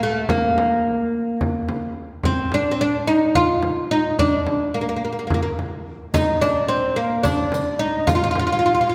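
A woody, fretless oud opens this longing, melancholic Turkish makam ensemble excerpt in Bb makam rast, carrying the melody up front in a straight 7/8 at 216 BPM in eighths, joined at 0.3 s by a close, dry frame drum played with soft hands, while at 6.1 s a breathy, bright low ney enters with vibrato on a second line and a riq's jingles sit in the background, the group heard from further back in a wet concert hall.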